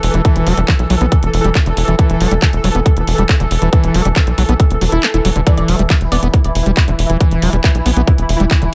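Psychedelic trance at 138 BPM in a straight 4/4, intense and driving, with a tight, up-front electronic kick, garage-kit handclaps and warm hats, and a punchy sawtooth sequencer bass on an E5 chord. A screaming, squelchy acid line with distortion, chorus and tape echo carries the riff over a pulsing, detuned gated texture of sustained chords with sidechain pumping. The kick drops out between 5.0 and 5.5 seconds, and a bright, juicy blip pluck sits in the background from 5.5 to 6.7 seconds in this dry, close-sounding cut from a longer piece.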